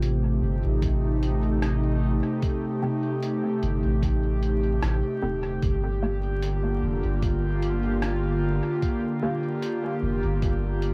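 The rhythm sits at a slow 75 BPM in 4/4, with a lightly swung sixteenth-note feel carried by a muffled, pitched-down sampler-style kit of hi-hat and rim click soaked in dub echo, joined at 0.8 s by a compressed, thumpy electronic kick. This short ambient dub passage in G minor feels meditative and hazy, moving from Am7b5 to Gm7 at 5.6 s. Up front, a breathy, full-bodied pad holds sustained chords with a slow attack and long release, its detuned layers shimmering through chorus, while a deep, round sub bass anchors the low end. From 2.8 s to 9.4 s a dark, muted chord stab appears, its short, evolving hits colored by phaser, lush chorus and dub echo under a continuous filter sweep. The whole piece carries the grain of a home cassette recording in a booth with moderate ambience, with vinyl crackle drifting beneath the music.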